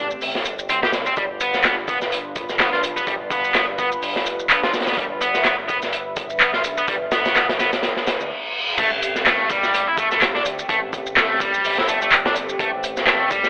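Swung sixteenths at 126 BPM drive this funky, raw breakbeat cut in A minor, where a crunchy kit with dark cymbals and a tight kick sits up front alongside electronic shaker and handclaps, a sludgy, double-tracked overdriven guitar riff trails tape echo, a bright envelope-filtered fingered bass adds tube saturation, and a swirling, nasal analog pad with phaser, chorus, tremolo and sidechain pumping holds Am7 and G7, until a reverse cymbal at 8.2 seconds leads into a drop at 8.8 seconds with a sub drop impact lasting to 10.7 seconds, the whole mix carrying a dry, gritty, telephone-like tone and small room ambience.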